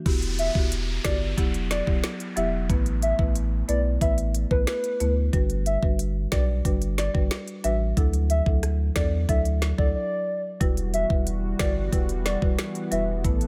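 A straight 4/4 dancehall groove at 91 BPM in E minor sets a hypnotic, bouncy mood, as an up-front electronic island pop drum kit with knocking kick, woody snare, rim click and smooth hats drives a round sine sub bass and a vintage, band-limited marimba. A hollow, mellow clarinet-like synth lead carries the melody with chorus, vibrato and delay, a downlifter sweeps through until 5.3 s, and a detuned sawtooth analog pad with chorus and sidechain pumping enters at 10.6 s after a brief break, all over Emadd9, Asus2, Gmaj7 and Dadd9 chords in a digital ambience.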